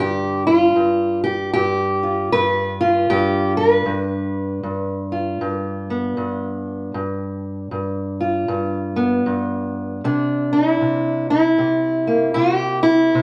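A dark, boxy fingerpicked steel-string parlour guitar sits up front and plays alone in this soulful, swaggering acoustic country blues excerpt at 78 BPM in 4/4 with a swung eighth-note feel, ranging from G2 to B4 in G mixolydian, tuned to A4 = 435 Hz, and moving from G7 to C7 at 10.0 seconds, all caught live in a stone room with a one-second reverb.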